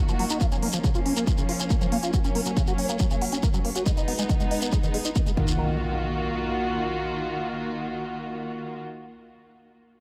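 Light reverb and digital ambience give this short cut from a longer uplifting trance track a polished studio sheen, with a driving yet emotional mood at 139 BPM in a straight 4/4, set in Eb minor. A rich, up-front string section holds sustained chords throughout, its bowed ensemble tone smooth and even with light vibrato, pumping under sidechain compression as the harmony moves through Bbm, Gb and Abm before settling on Ebmadd9. Beneath it, a squelchy, resonant liquid acid bass plays sawtooth arpeggios that run through a filter sweep, coloured by phaser, analog chorus, dub echo and saturation for a bright, liquid bite. The overdriven electronic kick sits heavy and forward, while layered, overdriven hi-hats with their own sidechain pumping and a grainy, mellow shekere played close to the mic fill out the groove. At 5.4 seconds an electronic impact lands, the bass falls away by 5.8 seconds, and the strings carry on to 8.8 seconds.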